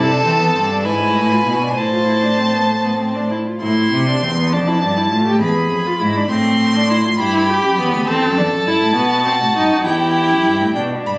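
In a straight 6/8 at 67 BPM counted in dotted quarters, this joyful, elegant excerpt of a baroque-style fugue in A minor for string quartet places a focused first violin melody with vibrato up front, above a second violin line that rests between 3.3 and 7.2 seconds, a close, warm viola accompaniment with soft attacks and expressive portamento, and an up-front cello bass with its own vibrato and sliding portamento; the two violins and cello share a rich tone, and the quartet is captured on a phone in a moderate recital hall with added club reverb and compression as the harmony moves from A minor through D minor to settle on E minor.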